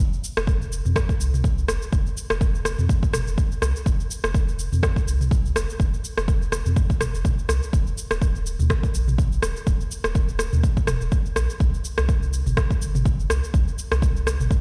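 A swung 4/4 groove at 124 BPM drives this warm, propulsive afro house passage, with a tape-tinged afro-pop drum kit of cabasa, rim click and toms in studio reverb, a punchy, overdriven electronic kick that enters at 0.5 seconds and sits up front, and a deep, round, mellow sine sub bass with sidechain pumping, the recording sounding as if played on a big sound system in a bare stone room.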